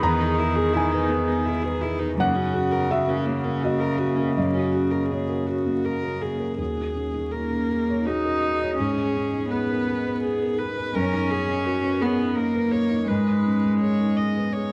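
Neoclassical piano and strings in a rubato 3/4, reflective and fragile, this excerpt from a longer piece pairs a felt-muted upright piano, mellow and intimate with audible action noise, against a pure, floating cello line and a close viola played sul tasto with light vibrato and an airy bow. Alongside them, a very quiet, glassy FM pad holds ethereal sustained chords with ensemble chorus and a long release. Moderate spring reverb, vinyl crackle and a dark, warm production frame the harmony as it moves from Emaj7 to F#, then shifts at 6.6 seconds toward D#7sus4 and a closing G#m.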